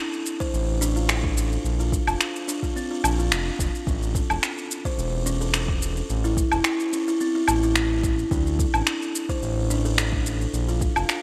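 A buzzing kalimba stands at the front of this meditative organic downtempo excerpt, its woody, ringing arpeggios sounding close and dry between C4 and C5 and trailing a digital delay. Underneath, a smooth synth bass sits up front between E1 and D2, blending sawtooth, square and triangle tones with a touch of ring modulation and a sustained body shaped by sidechain pumping. An overdriven electronic kick drum gives a deep, layered pulse, while electronic shaker, finger snaps and woodblock, also overdriven and pushed close, carry a gated reverb. The groove moves at 108 BPM in 4/4 with a light swing on the sixteenths, and the harmony passes from Bb to A before settling on D5 and then Bb5 near 10.5 seconds. A moderate plate reverb and bright 1980s-style digital production frame the whole piece, which runs to about 11.2 seconds.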